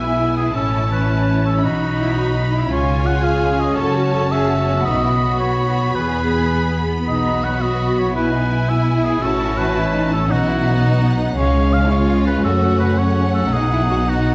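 A heroic adventure film score in 12/8 at 111 BPM, this adventurous, soaring passage in B mixolydian, cut from a longer piece, sets a focused, vibrato-rich violin melody over a clear classical oboe second line, a background violin second line, distant, smooth violas, mellow ringing harp arpeggios in the background, even cellos and an up-front double bass section with a smooth top, all within a moderate scoring stage reverb and a dark, warm production.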